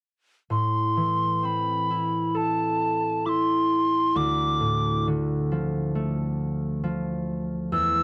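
A dry, close 1970s-style studio sound with light reverb frames this short excerpt of a rubato Celtic slow air, full of longing and mourning. Up front, a hollow wooden whistle carries the melody with an airy tone, soft attack and gentle vibrato, while a fingerpicked concert harp rings out beneath it. The harmony shifts from Am to Dm at 4.2 seconds.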